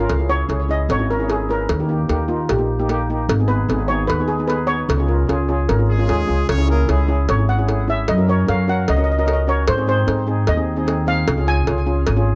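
A dry, close 1970s-style studio sound with small-room ambience frames this festive, sunny calypso excerpt at 150 BPM in 4/4, where a mellow, up-front steel pan solo on soft rubber sticks, touched with tape echo, rides over a second shimmering steel pan on medium rubber sticks, a woody pizzicato upright bass, a metallic cowbell and a brief entry of brilliant horns with light vibrato and octave doubling from 5.9 to 7.2 seconds, moving through C#m, D#, G#m and C# before turning to F# and G#.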